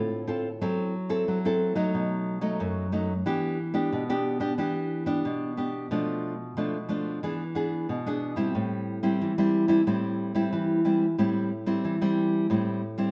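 A lone fingerpicked nylon-string guitar carries this excerpt of a bittersweet yet lively samba in A minor at 91 BPM, playing solo, up front and full-bodied, with audible finger squeaks giving its classical tone an intimate edge. Over about 13 seconds it moves from a rootless Dm7 through F#m7b5, B7, Em7, Bm7b5 and E7 before settling on Am7. A wet stone-room reverb surrounds the guitar, and the playing has the immediacy of a live performance in a single room.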